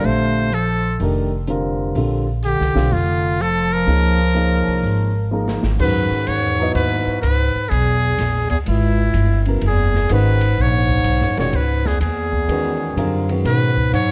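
This searching, spiritual modal jazz excerpt opens with the whole quintet together at 125 BPM in a swung 4/4: a muted trumpet carrying the melody, a bass clarinet on a second line, concert grand piano, upright bass and an open jazz drum kit. The trumpet, wearing a metal mute, sits up front with a buzzy, thin tone, light vibrato and scooped notes, while the mellow bass clarinet weaves its own solo-style line beneath it. The piano colors the harmony with a shadowy voicing and deep bass, moving from Bbmaj9 to Db69 before a drum fill ushers in a shift to F# mixolydian and an F#9sus4 chord at 5.8 seconds. The pizzicato upright bass is the most forward part, woody and growly, and the drums sit further back with airy ride and hi-hat, dusky cymbals, a boomy kick and a vintage 12-bit sampler grit. Light reverb and a dim, cozy production give the piece a contemplative glow, and the piano drops out just before the others at 13.7 seconds.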